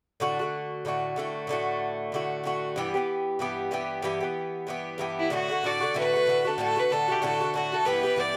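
A picked Irish bouzouki opens this bright, cheerful Celtic reel at 0.2 s, its metallic double strings sitting up front as it plays accompaniment over D and E minor with a lightly swung lilt. At 5.2 s a single bowed fiddle takes the melody, its biting, intense tone carrying a light vibrato. Close, detailed microphones and a touch of reverb frame this short cut from a longer piece.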